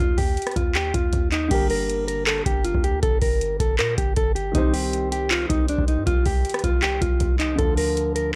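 A booming analog drum machine sits up front in this melancholic, menacing trap excerpt at 158 BPM in a half-time feel and G minor, with its deep kick, metallic hi-hats, handclaps, rim clicks and crash cymbal carrying a tape-warm, large-room character. A clean, fingered electric guitar plays the dark, mellow melody over a boomy, sine-like 808-style bass with a fast attack and a noise layer. A smooth, vintage baby grand piano joins at 1.5 seconds as the chords move from Eb through Gm, Cm and Dm, all in a dry, gritty hardware sound.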